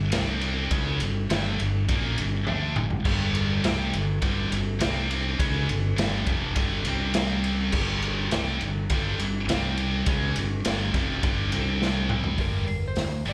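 This heavy, menacing hard rock excerpt features a raw garage drum kit, its punchy kick, medium-tuned snare and dark cymbals sounding saturated and gritty, with a rolled-off top and a pumping small-room character, placed up front from 0.1 s. Two scooped, high-gain guitars play the riff in G minor at 103 BPM in a straight 4/4, one distorted and bright up front while the other sits in the background. They move from C5 to a G minor chord, then cycle between C5 and G5 power chords. A modern fingered electric bass, direct and bright, holds the low end up front beneath them. Drum fills land at 2.5 s and again at 11.8 s, the second leading into a lightly driven lead guitar that enters at 12.4 s with a compressed, slightly broken-up tone and a slapback echo. The whole band sounds like a live club gig heard through the venue's PA, wrapped in small-room ambience and club reverb, and the clip is cut from a longer piece.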